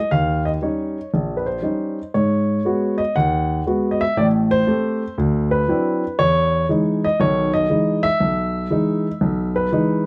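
Solo jazz piano in a warm, playful mood, set to a swung 4/4 feel. An intimate grand piano plays alone and up front across its whole span, moving through D#7, G#m7, Am7 and D9 before settling on Emaj7, with the instrument's action noise audible. Light reverb gives a natural sense of space to this brief fragment cut from a longer piece.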